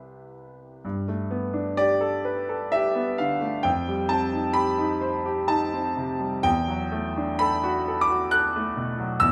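A clear concert grand piano, up front and open with a deep bass, carries this short solo fragment cut from a longer impressionist classical piece. The mood is luminous and dreamy, moving at 64 BPM in 3/4 with uneven beats and free rubato that loosen the sense of pulse. Set in G mixolydian, the harmony drifts from Cmaj7 into Gadd9 at 0.8 seconds, then to F9 and finally Em11 at 6.5 seconds, a chain of rich extended chords that keeps the colour hazy and suspended. The piano spans a broad register from C2 up to F#6. A moderate recital hall reverb, with a 1.2-second decay, surrounds the instrument with a gentle sense of space through to the close at 9.3 seconds.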